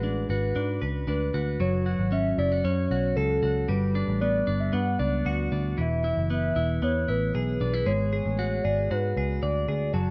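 A hollow, clarinet-like synth melody opens this wistful, bittersweet slice of jangly indie pop together with a twangy twelve-string electric guitar playing arpeggios and a round, foam-muted picked electric bass, all entering at 0.0 s. The lead has a soft, woody body with vibrato and a shimmer of chorus and phaser, sustaining its notes over a mellow tone. Up front in the mix, the guitar rings bright and clean with a compressed edge, while the vintage bass, also up front, sounds dark and amped in a straight, steady 4/4. After a brief opening on G#m7b5, the music shifts at 1.6 s into a longer passage that moves through F#m, Gmaj7 and E before returning to G#m7b5 at 7.9 s. Light reverb and a rough home-demo mix give the piece an intimate, unpolished feel, and it sounds cut from a longer piece.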